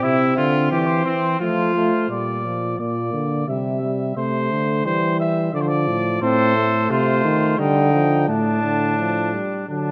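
Solemn and contemplative, this short passage from a classical brass canzona moves at a measured 87 BPM in 3/4, centred on Bb major. A mellow trumpet carries the melody up front, its light vibrato sounding distant and roomy. A clear second trumpet shares the opening in a lower register, falls silent at 2.1 seconds, and returns at 6.2 seconds to shape the imitative texture again. Beneath them, a warm euphonium supplies accompaniment while a bass trombone anchors the bass line near the front of the blend. The ensemble sits in a moderate concert hall reverb, and the harmony passes from C and F through Bb, Dm and a diminished chord before settling on a suspended close.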